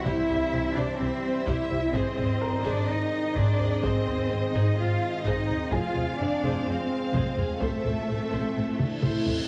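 Lush bowed strings open this futuristic, vast hybrid orchestral and electronic film cue at 127 BPM, with up-front cellos and woody double basses carrying the bass beneath a vibrato violin melody, a second violin line and a viola accompaniment, while very quiet horns and trombones hold chords alongside a deep, detuned sawtooth pad, a clear but worn grand piano adds a tape-echoed texture in the background until 7.6 seconds, and hard-stick taiko drums in a small room drive toward a huge, dark reverse cymbal at 8.7 seconds and a drum fill, over a C, G#, Fm and Am progression, in a heavily compressed, radio-like mix with scoring-stage reverb.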